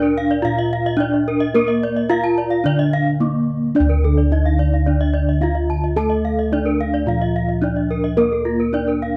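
A hypnotic, shimmering stretch of Balinese gamelan in D pelog at 109 BPM, cut from a longer piece, opens with an up-front, wooden-mallet bronze metallophone carrying the melody over round, mellow bossed gongs played with padded beaters in the bass. Two more metallophones spin arpeggios above: a soft one struck with padded disc mallets and a bright, horn-mallet one whose paired tuning produces beating shimmer. At 3.8 seconds a lower horn-mallet metallophone adds accompaniment with a boxy small-room colour, all captured in a dry, close 1970s-style studio sound touched with reverb.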